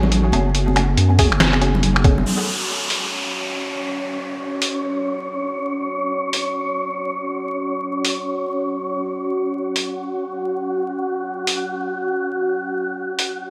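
A swung, half-time groove of gritty, pitched-down sampler drums with finger snaps, hi-hat and a medium-tuned snare drives this heavy, meditative deep dubstep excerpt, which opens over a moody, detuned sawtooth pad with muted, phased dub chord stabs, a thick saturated sub bass and distant bright congas, joined at 1.2 seconds by a thumpy electronic kick, all of which stop at 2.2 seconds. An electronic downlifter then sounds, and a breathy, wind-like noise texture drifts in at 3.1 seconds above the dark pad, the whole bathed in lush hall reverb, vinyl crackle and bright 1980s-style digital production.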